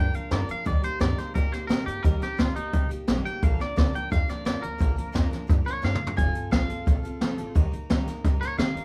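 A twangy, clean electric guitar leads this rowdy, retro rockabilly excerpt, carrying the picked melody over a jumbo steel-string acoustic guitar whose fresh strings sound full-bodied, with audible finger squeak as it picks out the accompaniment. An upright bass sits in the background from the start, its pizzicato gut strings giving a woody, thumpy low end. A jazz kit played with brushes joins at 0.1 s and sits up front, pairing a high-tuned snare and boomy kick with hi-hat and toms under a rolled-off top. The band drives along at 174 BPM in a straight 4/4 in Bb major, tuned to A4 = 435 Hz, moving from Bb through Eb and back before a drum fill at 5.8 s leads into F and then Eb. Recorded live in one room with moderate studio reverb, the performance has a rowdy, live energy.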